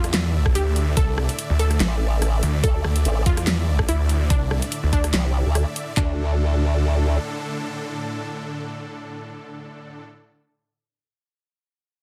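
A wobbling formant-sweep wobble bass, chorused and overdriven, sits up front in this heavy, aggressive wobble dubstep excerpt in D minor, entering at 1.8 seconds and carrying the low end until about 7.2 seconds. From the start, a growling, detuned saw bass snarls with distortion and overdrive until about 5.1 seconds, within a drop that runs to 6.0 seconds. The drums are split across two layered electronic kits with a tape-tinged sound in a small room: one brings handclaps, bright hi-hats, rim clicks and a huge snare with soft clipping, while the other adds a knocking kick, more handclaps and toms. Held supersaw chords pump under sidechain compression with a huge, lush, bright sound, and a punchy, bright unison pluck carries the melody through a delay, both running for the whole ten seconds. The groove sits at 144 BPM in a half-time feel with a light swing on the sixteenths, and the mix is dense and heavily limited with little reverb.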